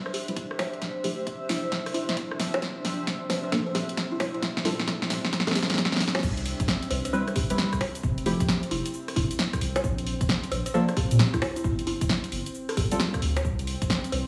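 A buzzing, woody kalimba carries the melody through this bouncy, sunny two-step UK garage excerpt, its soft plucked notes trailed by dub echo. Up front, a house drum kit with a punchy snare, bright hats, bongos, shaker, rim click and crash cymbal swings over a layered electronic kick, both set in studio reverb. Deep, mellow chord stabs, treated with chorus, phaser and dub echo, move through Cmaj7, Fmaj9, Bb and G9sus4, while a filter sweep on the stabs and a drum fill shape the opening build-up. A dark, detuned analog pad sits in the background with a blurred, evolving granular cloud pad, both given sidechain pumping, until the cloud pad stops at 6.2 seconds as the drop arrives. There a round dub sub bass enters with a fast attack beneath the groove, and the chords give way at 13.4 seconds within a light digital ambience.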